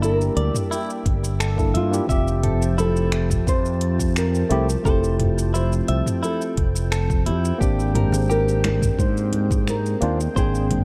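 A straight 4/4 groove at 87 BPM drives this smooth, relaxed sunset chillout excerpt, built on a deep house drum kit of finger snaps, metallic hats, shaker and toms, with a deep electronic kick entering at 1.1 s and very quiet, ringing congas arriving at 7.9 s. A punchy, up-front fretless electric bass anchors the harmony as it moves from Gm69 to Fmaj7 and on to Abmaj9#11, while a direct-sounding tine electric piano and a thick, detuned unison pad with chorus fill out the middle. Over this bed, a dark, thumb-plucked nylon-string guitar carries the melody with delay, joined by picked, compressed arpeggios from a direct-recorded clean electric guitar, also with delay, in a dry, warm production.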